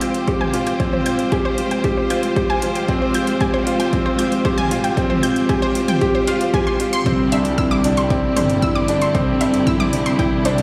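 Hopeful and tender, this 115 BPM piano and strings electronica excerpt in C major sets a muted, intimate upright piano riff up front with delay and shimmer reverb over a smooth bowed string section and a detuned analog pluck arpeggio with chorus that builds under a filter sweep, both pumping with the sidechain, while deep house drums with metallic hats and a punchy overdriven kick drive toward the drop at 7.1 seconds, where the chord moves from Fmadd9 to Cadd9 and a lush, distant bowed double bass section enters.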